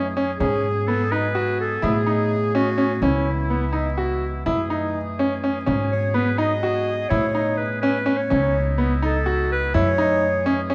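Contemporary chamber music in a playful, shimmering 11/8 at 251 BPM in eighths, cut from a longer piece, with a bright clarinet entering at 0.4 s to carry a classical-style solo melody up front over a brilliant, intimate grand piano whose arpeggios ring with long sustain and audible action noise. A woody, growly pizzicato upright bass thumps beneath, while a woodwind section adds sustained chords with light vibrato and a deep, vintage frame drum plays very quietly until 10.1 s. Chords such as G#m7, Amaj9, C#m7 and F#m9 cycle through a dark production with moderate concert hall reverb.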